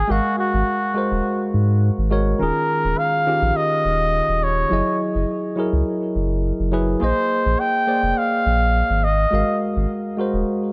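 A cup-muted trumpet, breathy, veiled and intimately close, sings the melody through tape echo from the start over a round, deep sub bass, while a clean tine electric piano, also touched with tape echo, fills out the suspended seventh and ninth chords in this sunny, warm sunset chillout fragment cut from a longer piece, set in a small room with light reverb.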